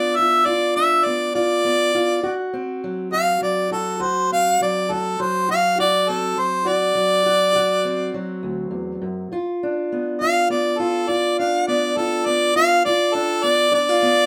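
A warm harmonica takes the solo from the first second, its soft attack, light vibrato and scooped notes giving a jazzy, swaggering edge to this laid-back blues in D mixolydian at 68 BPM in 12/8 with a straight feel. Beneath it, a boxy, parlour-style fingerpicked steel-string acoustic guitar carries the accompaniment through G7 and D7, with both parts sitting up front in a small room. This is a 14.3-second excerpt cut from a longer piece.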